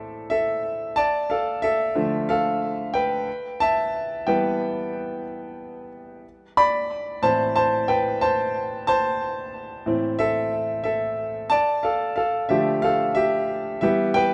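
A clear, up-front concert grand piano plays alone from the start, its deep bass and smooth, vintage tone touched by tape echo and set in a small room with light reverb, carrying a driving yet bittersweet pop feel at 91 BPM in straight 4/4 over Am, Dm and Em chords, in a rough home-demo sound cut from a longer piece that runs 14.3 seconds.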